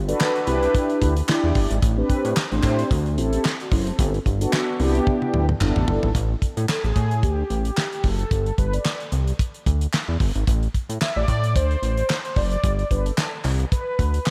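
A glossy, detuned synth bass with a snappy filter pluck drives this danceable, funky slice of early-eighties boogie funk, sitting up front beside a dry, damped 70s drum kit with a fat snare and tight kick. Round, dark synth brass with vibrato and an evolving filter sweep fills in jazzy extended chords, while a hollow, distant group handclap sits in the background. After a drum fill at 5.1 seconds, an analog polysynth solo enters at 6.2 seconds over sparser suspended harmony, all set in a light small-room ambience.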